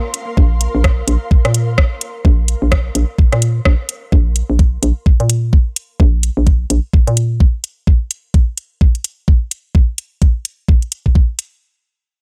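Cool and hypnotic, this short cut from a longer minimal techno track rides a steady 4/4 pulse with a swung sixteenth-note feel. An ethereal, airy pad opens the piece, its detuned unison voices softened by ensemble chorus, built-in reverb, tremolo and sidechain pumping, and it fades out by 4.1 seconds. A garage drum kit of metallic hi-hats and rim clicks with a tape-warm character enters almost at once, soon joined by a knocking, up-front electronic kick that anchors the groove. A hollow, bouncy FM bass with a fast attack and decaying knock pumps against the kick from 0.4 seconds until 7.5 seconds. The mix is dry and close, leaving the drums to carry the final seconds on their own.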